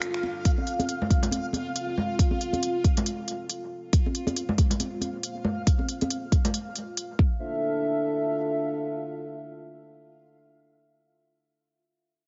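Heavily compressed and band-limited, this brooding, meditative deep dubstep excerpt has a radio-like sound that tops out at 7.7 kHz, set in a lush hall reverb. At 138 BPM in D minor, with a swung, half-time feel, a dark analog pad holds detuned, nasal chords with a sub octave and chorus, moving from F to Bb5 to Dm. Alongside it, a reversed, granular texture swells, bright and dreamy, while a deep house kit adds finger snaps and smooth hats. Ringing, high-tuned congas sit close and dry up front with dub echo, and a layered electronic kick enters at 0.5 seconds as the prominent anchor of the groove. Between 6.5 and 7.4 seconds the rhythm and texture fall away, leaving the moody pad to sustain alone until 10.4 seconds.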